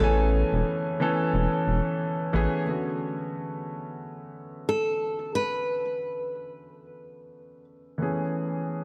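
A fingerpicked nylon-string guitar melody, a worn baby grand piano and a round, deep analog bass with a filter pluck all open this relaxed, smooth sunset chillout piece at 90 BPM with a gentle 16th-note swing, moving from Amaj9 to Bm9 and back. The bass drops out at 2.5 seconds, leaving the bright, fresh-stringed guitar and the long-sustaining piano, both touched with tape echo, until the guitar stops at 7.6 seconds and the piano carries on to 8.8 seconds. A lush hall reverb wraps the whole fragment, which is cut from a longer piece.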